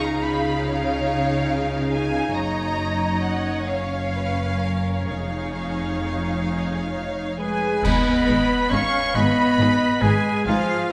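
A slow, rubato 6/8 pulse at 44 BPM in dotted quarters gives this moving, hopeful film-score passage, cut from a longer piece, an uneven, breathing feel. Bowed string sections carry it from 0.0 s: a lush, vibrato-rich violin section sings the melody high above a smooth, even second violin line, while a rich viola section fills the middle with accompaniment. Cellos and a chamber double bass section anchor the bass, the cellos focused and the basses gently vibrato. At 7.4 s a clear, soft-attacked oboe and an airy, distant metal flute join on second lines, and a dark French horn section adds sustained chords in the background. At 7.8 s, as the harmony arrives on G#m after C#add9, F#maj7 and C#add9/E#, dark clash cymbals and concert bass drum mark a brief accent that opens the second section. A wet scoring-stage reverb wraps the orchestra in a spacious glow.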